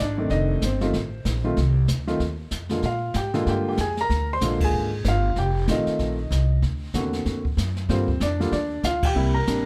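A brisk swing at 190 BPM in 4/4, with a moderate lilt to the eighth notes, drives this short, sophisticated jazz piano trio excerpt cut from a longer piece. The concert grand carries the melody up front across a range from C3 to C6, its intimate tone bathed in plate reverb, with audible action noise and deep bass adding presence. Beneath it, the pizzicato upright bass is woody and thumpy on gut strings, sitting close and playing from F1 to Bb2 from the very start. The brush kit joins at 0.3 seconds, sounding more distant and roomy, with dark cymbals, a medium-tuned snare, a boomy kick and a rolled-off top end. The harmony moves from F7 to Bb7, back to F7, then through D7alt, Gm7 and C7, and the whole band strikes accents together at 4.6 and 9.0 seconds, all inside a light ambient reverb.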